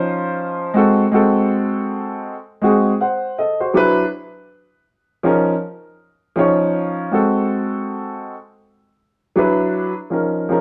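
Hip hop with a nocturnal, mellow mood, carried entirely by a solo grand piano across this brief excerpt from a longer piece. The piano sounds dark and boxy, sitting up front in the mix, and it plays alone from start to finish at 10.6 seconds. Its harmony cycles through Dbadd9, Ab7b9 and D69, returning to the opening chord at 4.5 seconds to repeat the sequence. A gentle swing on the sixteenths gives the playing a relaxed, laid-back feel in 4/4. Moderate reverb from a stone room surrounds the piano, lending the close, intimate sound a sense of space.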